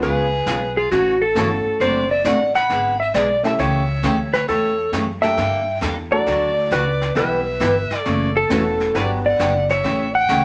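A swinging 134 BPM groove in 4/4, driven by brushes on a vintage kit with a rolled-off top and thumpy pizzicato upright bass, carries this down-home western swing passage in D major, cut from a longer piece. Up front, a dark, compressed lap steel played with slide and fingerpicks sings the melody, while an intense bowed fiddle with light vibrato adds a second line above a full-bodied jumbo acoustic guitar. A woody, polished upright piano with short sustain joins the accompaniment at 1.4 seconds and drops out at 9.6 seconds, all set in a small room's moderate reverb.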